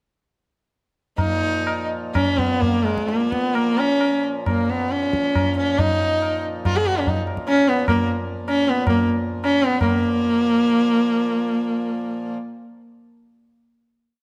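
A moderate recital-hall reverb surrounds this complete Hindustani classical piece in raga Bhairavi on Bb, tuned to A4 = 444 Hz, its meditative, longing mood set in 5/4 as the tempo quickens from 125 to 177 BPM. Up front, a single bowed sarangi carries the melody with a clear, focused tone, light vibrato, gliding portamento and sympathetic strings, moving between composed lines and improvisation within the rhythmic cycle, while a reedy, nasal hand-pumped harmonium breathes an airy drone in the background. Close, low-tuned, ringing tabla marks a ten-beat cycle until 9.9 seconds, and the theme gives way at 9.8 seconds to a final chord that closes at 11.6 seconds.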